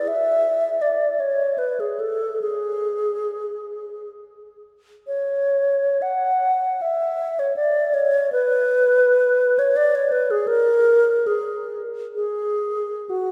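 A lone wooden-headed alto flute opens this short classical excerpt, playing freely in a rubato three-time with a mournful, yearning cast across its span from F#4 to F#5. Its tone is airy and warm, shaded with vibrato and given a crisp attack, and it sits up front even as a wet church reverb with a 3.8-second decay places the listener further back in the room. The solo line carries on alone for the full 13.3 seconds before the fragment is cut off.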